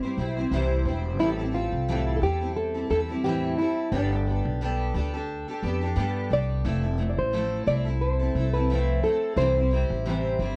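Acoustic pop in a heartfelt, easy-going mood with a gentle swing, where a thumb-plucked classical nylon-string guitar carries the melody over a double-tracked, picked dreadnought steel-string guitar up front, joined at 0.2 s by a woody, thumpy pizzicato upright bass on dark gut strings, all in a moderate studio room and colored by worn cassette tape with warbly pitch drift.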